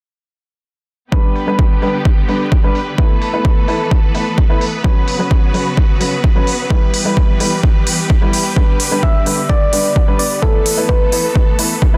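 A punchy, up-front electronic kick drives this anthemic, powerful festival progressive house passage at 129 BPM, with crisp, low-pass-filtered hi-hats riding alongside it. A dark, intimate baby grand piano with audible action noise and a distant, lush string section both pump with sidechain over a G, Asus2, Bsus2, Em progression, the piano trailing digital delay and the strings softened by a low-pass filter. At 9.0 seconds a round, gentle FM synth lead with chorus and vibrato takes the melody, and the mix sits in light digital ambience under a dense, heavily limited modern master.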